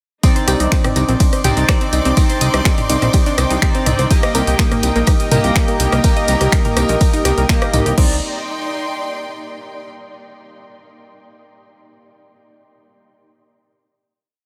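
A dark, cinematic melodic techno drop in C minor at 124 BPM opens at 0.2 s on a Cmadd9 chord: an overdriven, punchy four-on-the-floor kick sits up front with a dry analog drum machine's programmed hats and backbeat, a very quiet looped breakbeat from an acoustic kit, a lush detuned unison pluck running a 32-step arpeggio in the background, and an edgy sync-sweep polysynth pushing syncopated open-voiced stabs through chorus and dub echo. A fat, saturated analog bass gallops in sixteenths from 0.5 s, clear bowed strings drift through slowly shifting chords, and a deep, moody pad with chorus and phaser swells in at 4.9 s, with sidechain pumping on the synths, strings and bass. The drop gives way at 8.0 s to a final chord in which the strings ring on alone from 8.2 s until 9.9 s, all set in a small room ambience.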